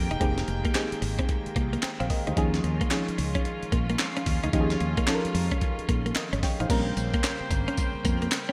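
A bright, 1980s-style digital production bathed in lush hall reverb carries this bouncy, punchy R&B excerpt in a new jack swing style, with a gritty, compressed sampler-style breakbeat kit up front whose thumpy kick, snare, hi-hat, handclaps, tambourine and crash give a swung sixteenth-note feel. A round fretless electric bass sits under a mellow FM electric piano that warbles through chorus, while a distant studio string section floats sul tasto chords and a clean semi-hollow electric guitar plays a picked riff in the background from 0.1 seconds. Very quiet group handclaps from a large room join at 0.7 seconds, and the harmony moves from Fm11 to Eb9sus4 before reaching Bbm69 at 6.7 seconds.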